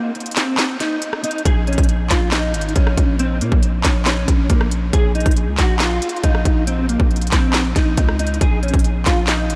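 A mellow, dark electric guitar carries the melody in this melancholic, eerie trap excerpt, its clean fingered tone softened by ensemble chorus, a low-pass filter and tape echo. The hip hop groove sits at 138 BPM in 4/4 with a half-time feel, in Bb minor, tuned slightly sharp at A4 = 441 Hz. A trap drum kit sits up front almost from the start, pairing a hard-clipped kick with a sharp snare, crisp hi-hats, handclaps and rim clicks, all with an electronic, tape-tinged sheen. After an opening break, a growling 808-style bass enters at 1.5 seconds on a Bb minor chord, its buzzy sine tone striking fast and then decaying. The harmony falls away again at 4.9 seconds as the parts continue under light reverb until the cut at 9.6 seconds.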